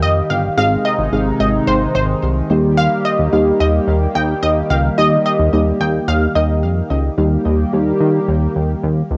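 Synth-pop at 109 BPM in Eb major, bright and nostalgic, cut from a longer piece and captured at home on cassette in a small booth-like room. A glossy, mellow chorused synth bass sits up front beneath a shimmering pulse-width pad holding slow-blooming chords, while muted, felt-like synth keys with a soft, dark, intimate touch enter at 0.6 seconds. A round, detuned analog pluck carries a second line with tape echo until 6.4 seconds, over chords moving from Eb to Ab and back.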